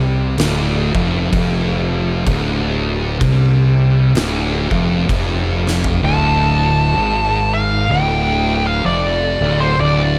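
This short cut from a longer stoner and doom metal piece opens with two thick fuzz guitars grinding out a heavy, ominous riff over a Dm chord, one sounding dark while the other stays in the background, joined by a round, punchy fingered bass with overdrive pushed up front. An oversized, low-tuned drum kit comes in at 0.4 seconds, its fat snare, punchy kick, toms and dark crash cymbals sounding saturated and gritty in a bright stone room that pumps around the hits. The pace is slow and swung, with a weighty, dragging gait. A drum fill at 5.6 seconds leads into a new section, where the drums drop out at 6.0 seconds and a compressed fuzz lead guitar with wah takes the melody up high. The guitars and bass carry on beneath the lead to the end at 10.2 seconds, all set in a light studio reverb.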